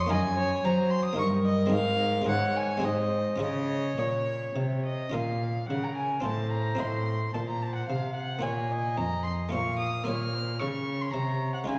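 Two violins, a cello and a buff-stop harpsichord sound together from the opening moment of this flowing, dance-like baroque-style sonata movement, cut from a longer piece and set in 3/4 at 109 BPM with a rubato feel. One violin carries the melody with a nasal, distant gut-string tone, while the other plays a second line in a darker, reedy voice placed up front. A close, rich cello supplies the bass, and the Flemish-style harpsichord, muted by its buff stop, gives a dry, lute-like plucked accompaniment in the background. The music begins in Db major and turns to Bb minor at 5.1 s, where a second phrase restates the opening material. A recital hall's lingering reverb places the ensemble at some distance, as though heard from further back in the room.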